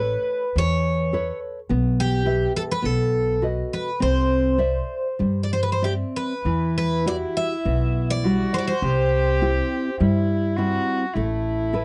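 Uneven, rubato beats at 101 BPM in 4/4 carry this longing, mournful fado-style ballad in E minor, where a shimmering, octave-doubled picked twelve-string acoustic guitar sings the melody up front with audible finger squeak until 10.3 s over a fingerpicked nylon-string guitar of deep classical tone and a woody, thumpy pizzicato upright bass, while a distant, reedy bowed cello with a nasal gut-string sound and slapback echo enters at 6.4 s with a second line, all captured in a dry, close 1970s-style studio sound in this short fragment of a longer piece.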